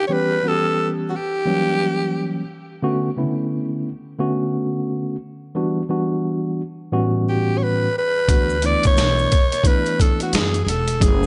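A growling, raspy alto saxophone with tape echo opens this mellow, cool jazz-hop excerpt at 88 BPM with a swung 16th feel, joined almost at once by a clean tine electric piano through its built-in speakers playing jazz chords from C#m7b5 to D6, the sax returning at 7.3 seconds before a gritty, compressed boom bap sampler kit with a thumpy kick, a woody pizzicato upright bass and very quiet, dry maracas and congas arrive together at 8.3 seconds, all in light small-room reverb.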